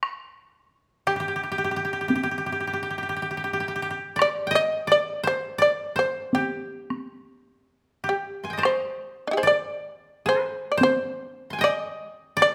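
Moderate recital-hall reverb surrounds this calm, austere fragment of Japanese traditional chamber music, cut from a longer piece. It sits in G in the miyako bushi mode, tuned to A4 = 443 Hz, with a 4/4 pulse that moves freely in rubato at roughly 51-58 BPM. Taiko drums struck with heavy sticks sound close and up front from the opening until 11.1 seconds. The koto, played with fingerpicks, carries a dry, woody second line between D4 and C6 throughout. The shamisen enters at 1.1 seconds to take the melody, spanning D4 to Eb5, as the most prominent voice, its fretless, plectrum-plucked tone buzzing and powerful. At 8.6 seconds the music moves into a new section that runs to the close.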